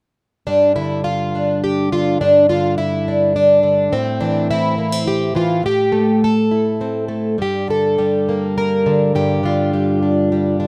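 Folk for solo fingerstyle acoustic guitar, this short passage cut from a longer piece moves at 104 BPM in 3/4 with a straight feel, sitting in G dorian and carrying an intimate, melancholic mood. A single fingerpicked, plugged-in twelve-string acoustic guitar plays alone from 0.5 to 10.7 seconds, ranging from G2 to Bb4. Its tone is dark and boxy, with a shimmering, octave-doubled character from the paired strings, and a touch of finger squeak can be heard. The harmony passes from G5 to Am7 at 3.9 seconds and then to Gm7 at 7.4 seconds. The guitar sits up front in the mix with light reverb, and the outdoor recording carries little sense of a surrounding space.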